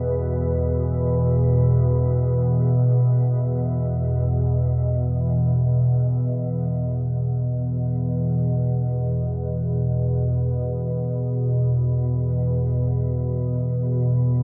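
In free time, this desolate ambient fragment from a longer piece rests on a single calm, organ-like drone that sounds alone and up front for its full 14.4 seconds, holding low between E2 and B2 on a sustained E5 chord. The drone's nasal unison tone blends sine and triangle colours, swelling in on a slow attack and fading through a long release, thickened by ensemble chorus, its own built-in reverb and a diffuse ambient delay. A wet cathedral reverb, 6.7 seconds long, places it in a vast, cavernous space, and the music moves into a second passage at 6.5 seconds.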